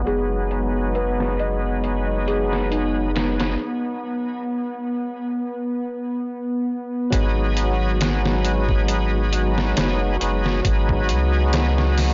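A bright, shouting tonewheel organ sits up front throughout this cinematic, hypnotic trip hop excerpt, lightly overdriven with key click, chorus vibrato, a slow rotary speaker, harmonic tremolo, tape echo and 12-bit sampler grit. It moves at 68 BPM in 4/4 with a gentle 16th-note swing, in G# minor tuned to A4 = 435 Hz. Beneath it, a warbling, lo-fi pad built from detuned sawtooth and triangle tones holds nostalgic chords with a slow attack, chorus and its own reverb, while a deep, round sine sub bass, touched by transformer saturation, stays up front. A muffled, pitched-down sampler-style drum kit with a thumpy kick, medium-tuned snare and filtered hats enters at 0.1 seconds, and a delicate, bell-like celesta plays dry, close-miked arpeggios through a digital delay until 3.6 seconds. The harmony rests on B6/F#, drops to a chordless break from 3.6 seconds under a filter sweep, then settles on G#m7 when the second section arrives at 7.1 seconds. 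The whole mix is blown-out and overdriven, with a low-pass filter that leaves nothing above 7.5 kHz, and sits in light reverb.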